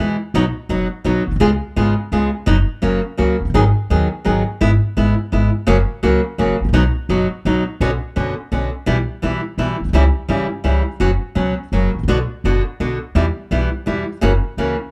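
Dark production with light reverb frames this sultry, tense tango excerpt in a rubato triple metre, where an up-front, bright nylon-string guitar fingerpicks classical accompaniment with audible finger squeak over a woody, pizzicato upright bass, the harmony shifting into a new section at 7.8 seconds.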